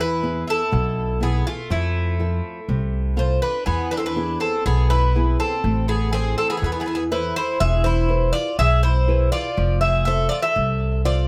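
Lightly reverberant and cut from a longer piece, this tense, dramatic Greek folk tune at 122 BPM in 4/4 places an up-front, metallic lead bouzouki with analog delay over a second picked bouzouki line with octave-doubled strings, a small fingerpicked nylon-string guitar and an up-front, woody pizzicato upright bass, moving through E, F and Am in E phrygian dominant.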